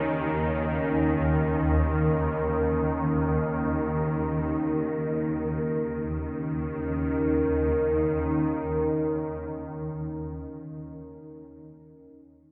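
Dark ambient drone in free time, cavernous and desolate, built on a single Eb5 chord, with a deep, moody sawtooth pad holding sustained chords up front through a chorus, while a swarming, warbling, detuned drone with a phaser sits beside it in the low register and slowly evolves with a tense, vintage, granular edge. An airy, breathy wind-like noise texture drifts in the background until about 5.7 s. The whole mix is dreamy and soaked in a lush hall reverb with a 2.7 s decay, and the recording is cut from a longer piece.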